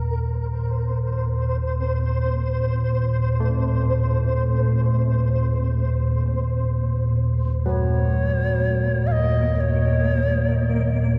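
In free time and tuned to A4 = 439 Hz, this desolate, ominous ambient fragment, cut from a longer piece, rests on a deep, rumbling, dark drone up front with phaser and reverb, beneath a flickering, grainy, detuned texture; clangorous bronze church bells enter with delayed arpeggios at 3.4 s, and a mellow, airy bamboo shakuhachi with vibrato and chiff carries a delayed melody from 7.7 s to 11.0 s as the harmony moves from Cm7/Eb to Ebm, all set in a vast, echoing space.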